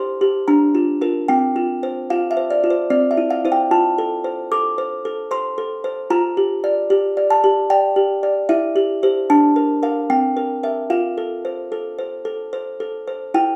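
In an unhurried 3/4 at 75 BPM, this innocent, tender classical lullaby in F major is carried by a solo music box, its delicate, tinkling, mellow tones sitting up front in a wet studio reverb as the short excerpt moves from Bb/D through Gm7/F and C7 to settle on F at 10.9 seconds.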